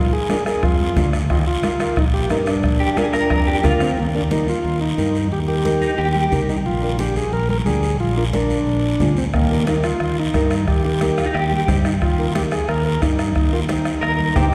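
A straight, danceable cumbia groove in 4/4 drives this joyful Latin excerpt, with a soft-beaten bombo that drops out between 4.0 and 9.3 seconds, very quiet congas and a raspy guiro under a warm fingered electric bass, while a mellow, overdriven vintage combo organ with light vibrato carries the melody over a small fingerpicked nylon-string guitar, and a dark, slightly broken-up picked electric guitar with tremolo joins as a second line from 2.8 seconds, all heard in a resonant church acoustic.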